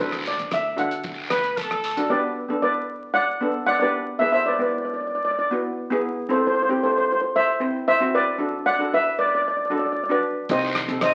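This sounds like a very old 78 rpm record, with vinyl crackle and a large, wet studio reverb around a bouncy, sunny calypso fragment in G major at 114 BPM. Up front, a lead steel pan played with medium rubber sticks carries the airy, shimmering melody over double-seconds pan chords struck with hard rubber sticks. A woody, growly pizzicato upright bass sits in the background, joined by a cloth-damped, thuddy drum kit with a tight kick, hi-hat and rim click, and a raspy guiro. A punchy, bright horn section with light vibrato adds a brief second line from 1.3 seconds; the bass, drums and guiro stop at 2.1 seconds, leaving the two pans alone until those parts return at 10.5 seconds.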